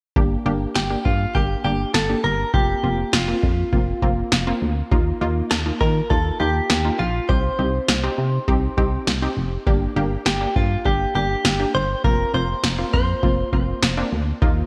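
An electro analog drum machine with a deep kick and punchy snare treated with gated reverb drives this melancholic, nocturnal synth-pop excerpt at 101 BPM in G minor, where a round, fast-attack FM bass and a lush, detuned sawtooth unison pluck carry the Gm to Fsus4, Ebsus2 and Cm changes from 0.2 seconds, while a clean, compressed, direct-recorded electric guitar enters at 0.8 seconds with a picked melody shimmering through chorus and digital delay, all within a bright, lightly reverberant 1980s-style digital production.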